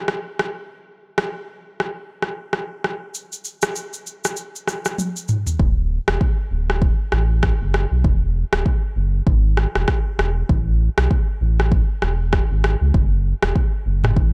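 An up-front, tape-warm electronic afro-pop drum kit with a deep kick, rim clicks, shaker and toms drives this joyful, breezy afrobeats cut at 98 BPM in 4/4 with a 16th-note swing, rolling into a drum fill at 5.0 seconds before the hi-hats are muted and a full, sine-and-triangle sub bass with an added octave enters at 5.6 seconds with a fast attack and sustained notes, everything kept dry and close with little reverb until the clip ends at 14.3 seconds.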